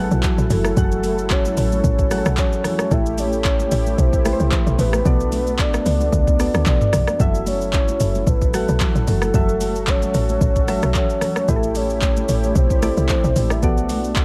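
Soulful and deep, this amapiano excerpt moves in a swung 4/4 over a minor-key progression that cycles through F#m7, Am7 and Bm7. A soft, octave-layered synth lead carries the melody with a full, dark tone, treated with chorus, tremolo and tape echo, while mellow electric-piano-like synth keys add round, warbling accompaniment with their own chorus. Behind them, a smooth analog pad built on detuned sawtooth holds sustained chords, its chorused sound pumping gently from sidechain compression. A tight, punchy log drum bass with a fast attack and a noisy FM edge drives the low end. An electronic afro-pop kit, up front with a deep kick, metallic hats, handclaps, rim clicks, shaker and toms, enters at 0.1 seconds, and bright, high-tuned congas with a thin-skinned, band-limited character sit in the background from 0.2 seconds. The mix is close and dry, with little reverb.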